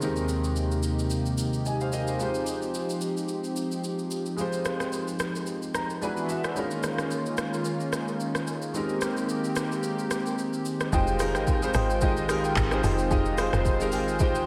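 An unhurried 110 BPM groove in 4/4 opens this amapiano excerpt, with a smooth R&B drum kit of soft kick, smooth hi-hats, handclaps, rim clicks and shaker swinging gently on the sixteenths, its tape-softened electronic sound pushed up front and re-recorded in a large room. Over it, a concert grand piano with audible action noise and deep bass plays intimate, vintage-toned accompaniment through an analog chorus, while a detuned sawtooth pad holds soft-edged sustained chords that pump against the beat. Set in F minor, the harmony moves from Abmaj9/Eb through Fm9, E9 and Eb9sus4 before returning, giving the piece a hypnotic, soulful drift, with piano fills around 5.5 seconds and again near the close. At 10.9 seconds the drop arrives: a woody, punchy log drum bass enters low in the register with fast, decaying hits, joined by a dark, wave-folded chord stab tucked in the background and coloured by chorus, phaser and tape echo. 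A lush hall reverb soaks the whole mix in a dreamy digital ambience until the cut at 14.5 seconds.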